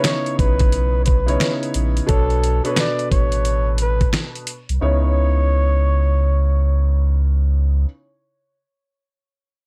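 Boom-bap hip-hop at 88 BPM in C# minor, moody and gritty, with a swung sixteenth-note feel over C#m9 and Bm9 chords in this short cut from a longer piece. A dusty sampler-style drum kit sits up front with a thumpy kick and fat, compressed snare until 4.8 s, while a round sine sub bass holds deep and sustained underneath from 0.4 s. A dark concert grand piano with audible action noise and a vintage cassette-tape tint plays intimate accompaniment, and a close-miked trumpet with a bucket mute carries a forceful, veiled jazz-style solo line with vibrato and analog delay until 6.8 s, all in a dry room.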